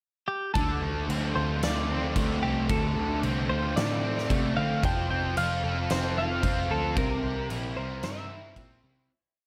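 Shoegaze-tinged dream pop rock in D minor at 112 BPM, this short, hazy piece opens with a clean twelve-string electric guitar playing a motif-based melody through tape echo before a double-tracked, distorted fuzz guitar with analog chorus, a dark, foam-muted picked bass driving eighth notes, and a big, natural-sounding arena drum kit with a fat snare and punchy kick join at 0.6 seconds in a big groove. The verse moves from Dm7 to F and C7 under a light reverb and small room ambience, the fuzz guitar's picked arpeggios sitting up front, before the whole piece fades out from 7.0 seconds.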